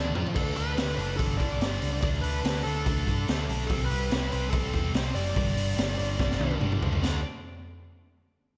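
This hard rock excerpt carries light reverb: a gritty, saturated, up-front drum kit in a small, pumping room, with a high-tuned snare, punchy kick and rolled-off top, opens with a fill, and another fill arrives at 6.2 seconds. A growly, overdriven picked bass drives underneath, while two bright rhythm guitars, one scooped and one high-gain, play a riff in the background with slapback echo. A bluesy lead guitar with slapback echo carries a powerful, swaggering melody over the chords before falling silent at 6.6 seconds.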